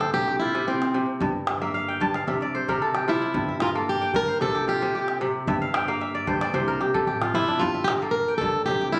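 A straight 4/4 pulse at 112 BPM carries this hypnotic, reflective passage of West African string and xylophone music in G dorian, cut from a longer piece and circling between G minor and C chords. Up front, a dark, boxy plugged-in acoustic guitar picks a swing-style melody beside a ringing, crisp kora that spins arpeggios and breaks into fills at 1.6 and 5.5 seconds. Beneath them, a deep, saturated calabash and a woody pizzicato upright bass sit lower in a phone recording of the room, treated with moderate studio reverb and compression.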